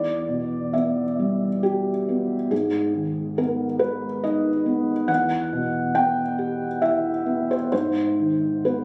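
A felt-muted upright piano plays alone from the start, its dark, thickly dampened tone sitting up front with the soft clatter of its action clearly audible and a touch of tape echo trailing the notes. This intimate, reflective fragment of neoclassical minimalist piano moves in a rubato 3/4 at around 65-71 BPM, spanning E2 to G5 as it alternates between Emadd9 and G#m over its 8.8 seconds. Captured on a phone in the room, the sound is compressed and veiled, with a club-like reverb and a top end that fades out above 10.7 kHz.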